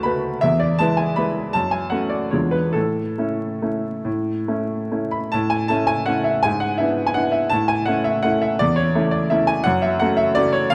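Classical piano waltz in A major, bittersweet and elegant, with a clear, natural-sounding baby grand playing solo and up front in 3/4 with a rubato feel between 133 and 181 BPM, its short-sustained notes ranging from D2 to B5, set in a wet recital hall reverb with vinyl crackle, moving from an opening section to a second at 5.3 seconds through chords such as F#m, E7b9 and E7/G# in this brief cut from a longer piece.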